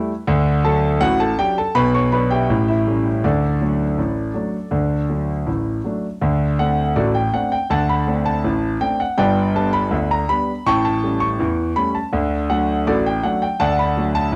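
A concert grand piano carries this cheerful, lively ragtime excerpt alone, its intimate, up-front tone showing deep bass, natural color and audible action noise, with a cassette-tape character. At 81 BPM in a straight 2/4 in D major, the passage states its opening strain twice, the second time from 6.2 seconds, moving through D, B minor and A7 before a D7 leads on to G and a return home to D. A light reverb and small room ambience give the recording the feel of a home cassette.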